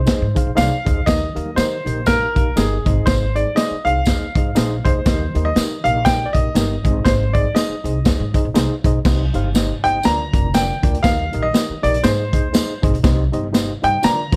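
A clear, up-front grand piano opens this joyful, uplifting slice of uptempo 1960s-style soul at 120 BPM, carrying the melody over a swung 4/4 groove as a reedy electric piano with fast tremolo, a woody pizzicato upright bass and a gritty, saturated breakbeat kit with dark cymbals and a punchy kick join almost at once. Faint, distant congas with soft hands and a jingly tambourine sit back in a large room, while light reverb adds a touch of space. The harmony moves between Ab and Eb before turning to Cm at 9.1 seconds and then Bb in this excerpt from a longer piece.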